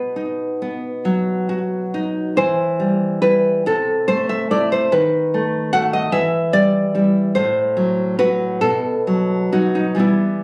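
Melancholic and intimate, this brief excerpt from a longer romantic piece for solo classical guitar unfolds in a slow, rubato 6/8, its fingerpicked nylon-string guitar sitting up front with a warm, acoustic tone and a touch of slapback echo. The harmony drifts from B through Em, Am/C and B7/D# before settling on Em at 6.1 seconds, then leans back toward B7 by way of F#dim/A. The recording was captured on a phone in a room with light, club-like reverb.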